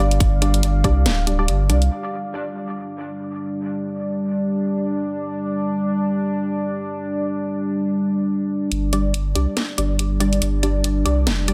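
Up front, a saturated sub bass gives this brooding, cavernous deep dubstep passage, cut from a longer piece, its thick triangle weight, pressing in over the first 1.9 seconds and returning at 8.7 seconds for the build-up that runs to the close. A dark, detuned ambient pad of sawtooth and sine layers with a sub octave holds sustained chords throughout, its slow attack, long release, chorus and built-in reverb filling the space. Muted, filter-plucked dub chord stabs appear at the start and again from 8.9 seconds, carrying vintage 12-bit sampler grit, chorus and dub echo. A garage kit with a cracking snare and hi-hat, tape-tinged and set in a small room, shares the bass's entries, while a tight electronic kick hits only briefly near the opening. At 141 BPM in 4/4 with a half-time feel and swung 16ths, the middle stretch leaves the pad alone before the beat returns, all set in an echo chamber reverb and a dense, heavily limited master.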